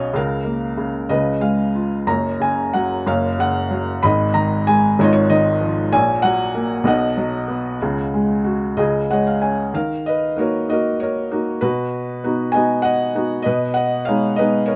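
A small room with moderate reverb frames a felt-muted upright piano placed up front, its soft, mellow tone carrying an intimate, natural quality through the thin felt. This short, melancholic and dark passage of lyrical solo classical piano, cut from a longer piece, moves in 6/8 at roughly 60-66 dotted-quarter beats per minute with a rubato feel. The piano plays alone throughout its 14.8 seconds, ranging from F#1 up to B5. The opening stretch drifts through chords built on C#, F# and B before a brief felt piano fill at 8.8 seconds. At 9.7 seconds the music settles into E-flat minor for a new section, passing through B and Abm/Cb and deepening the somber mood.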